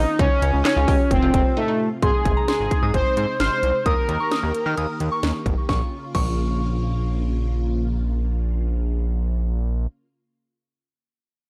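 Synth-pop at 131 BPM in 4/4, set in Bb dorian with a nocturnal, melancholic mood, this short section is cut from a longer piece. A bold, brassy analog synth brass carries the melody up front with chorus and vibrato until 5.2 seconds, over a glossy, pulse-width-modulated chorused synth bass and a punchy house drum kit whose overdriven kick, cracking snare, handclaps, hi-hat and crash were re-recorded in a large room. Behind them, a shimmering vintage string machine of violins holds sustained chords with ensemble chorus, while a lush, detuned unison pluck plays arpeggios through tape echo in the background during the opening seconds. After a brief break at 1.6 seconds, a pure, gentle FM synth bell enters at 2.0 seconds with a high second line, softened by chorus and tape echo. The harmony moves from Db and F through Ab and Eb before settling on Bbm, and the whole sits in a dry, gritty hardware recording with digital ambience.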